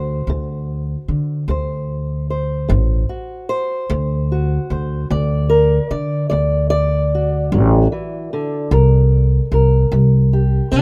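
Acoustic country blues with a gritty, swaggering mood, this excerpt rolls at 50 BPM in 12/8 as a fingerpicked old ladder-braced acoustic guitar with dark, boxy, woody tone and old strings carries the melody, while a growly pizzicato upright bass on steel strings sits a touch louder beneath it, both up front in a dry, rough home-demo mix that holds on D7 before shifting to C5 at 8.7 seconds.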